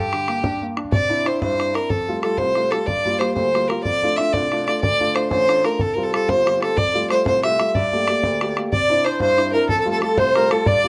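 The recording has a moderate studio reverb, with a single bowed fiddle up front. This spirited, driving Celtic jig in 6/8 moves at 123 BPM, counted in dotted quarters, over a straight feel. The fiddle carries the melody from the start in a smooth, even, clear tone with light vibrato, while an upright piano gives woody, natural accompaniment and a close, dry bodhran adds boomy, open percussion. The harmony cycles through colored chords such as Gm, Cadd9, Fadd9 and Gm7, with a turn through Dm and Csus4 before the phrase comes back around. At 8.7 s the section repeats and a close-miked soprano saxophone enters with a second line, its soft attack, vibrato and classical-style playing adding another voice until this short cut from a longer piece ends at 10.9 s.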